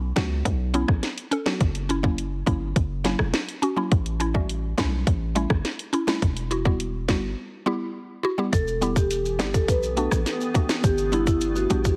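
A straight 4/4 dancehall groove at 104 BPM, sultry and bouncy, rides on an electronic island pop drum kit with a tight kick, sharp snare and vintage 12-bit sampler grit, over a punchy, heavy 808-style bass and a woody, round synth pluck pumping through chorus and phaser, until a break from 7.4 to 8.5 seconds gives way to an airy marimba with tape echo and ringing maracas, joined at 9.2 seconds by a cloudy, evolving granular pad, the mix carrying a heavily compressed radio sound with light reverb.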